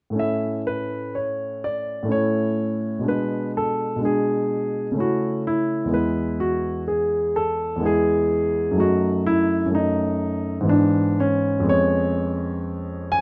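Dark, natural sound with light reverb frames a solo grand piano that sits up front, its deep bass giving the low register real weight. This flowing, dance-like baroque-style suite movement in A major moves at 62 BPM in 3/4 with a gently rubato feel, the piano spanning E2 to G#5 from 0.1 to 13.2 seconds. The harmony passes through A, E and diminished chords before reaching C#7/E# at 11.7 seconds in this short passage cut from a longer piece.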